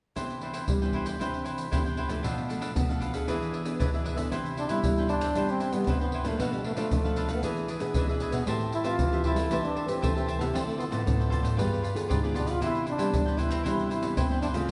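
Playful and lively, this samba and choro excerpt in C major moves at 116 BPM in 4/4, with a crisp, picked cavaquinho, a fingerpicked nylon-string guitar and a thumb-plucked classical nylon-string bass laying down Cmaj9, Bm7b5 and E7 harmony under up-front, soft-handed tube shaker, tight surdo and pandeiro, until a warm solo trombone enters at 4.6 s with jazz-style vibrato and scooped notes over a passage through Am9, Dm9 and G7b9, the ensemble set in a wet recital hall reverb.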